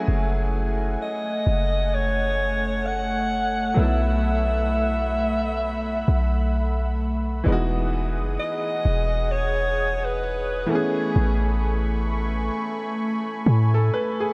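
Smooth and romantic, this excerpt of contemporary R&B drifts along at 65 BPM in E major, with a swung sixteenth-note feel. A bright, slightly worn grand piano and a mellow, detuned sawtooth pad with chorus carry the harmony throughout, the pad's slow attack letting its chords bloom beneath the keys. Down low, a deep, boomy 808-style bass sits up front, its sine tone edged with a noise layer and a fast attack that decays away. From 1.0 s to 11.6 s a breathy alto saxophone takes the solo melody in a jazz style, its warm subtone and vibrato set distant and roomy, trailed by delay. The chords move from F#m9 through B7sus4 to Emaj9 and Amaj9, and a huge ambient reverb soaks the whole mix in a dreamy haze.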